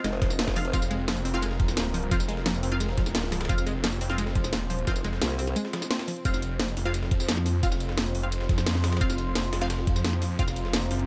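A snarling, tube-saturated saw bass growls up front from 0.7 s onward, taking over from a chorused formant-sweep wobble bass that also surfaces briefly around 4.9 s in this aggressive, mechanical slice of dark technical drum and bass. A knocking, tape-warm electronic kick anchors a kit with a cracking snare, metallic hats and tambourine, while a gritty, very quiet sampler-style breakbeat adds ride and a high-tuned snare. Behind them sit a moody analog pad with sidechain pumping, lush unison pluck arpeggios with dub echo that stop at 6.2 s, muted filtered dub chord stabs with phaser and cassette-tape grit, and a deep ambient pad with built-in reverb that arrives at 8.4 s.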